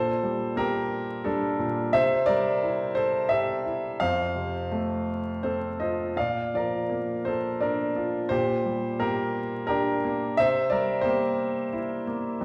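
A wet recital hall reverb surrounds this recording, with a bed of vinyl crackle beneath it, giving the sound the air of a church or concert hall. Within that space, a solo grand piano sits up front with a clear, intimate tone, its audible action noise and long sustain lending a natural, close-up presence. This classical piece is lyrical and brooding, bittersweet in mood, moving in a flexible rubato over a three-beat metre. The piano ranges from F2 up to F5, and the harmony passes from Gmadd9/Bb through C, F, Bb and Gm/Bb before settling on C7. The 12.4-second fragment is cut from a longer work, so it closes on that unresolved C7.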